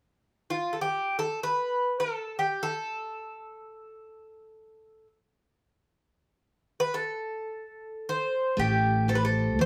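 A Greek bouzouki opens at 0.5 seconds, playing a solo melody in unmeasured time. Its metallic double strings, some doubled at the octave, sit up front in this brief, wistful and dark fragment of Greek folk music cut from a longer piece. At 8.6 seconds the harmony settles onto a single chord as two more acoustic parts join the bouzouki. A picked steel-string acoustic guitar with fresh strings brings a full-bodied jumbo tone and audible finger squeak to the accompaniment. A pizzicato upright bass with steel strings adds a woody low end, placed close to the listener. A moderate studio reverb gives the trio a modest sense of room until the fragment ends at 9.7 seconds.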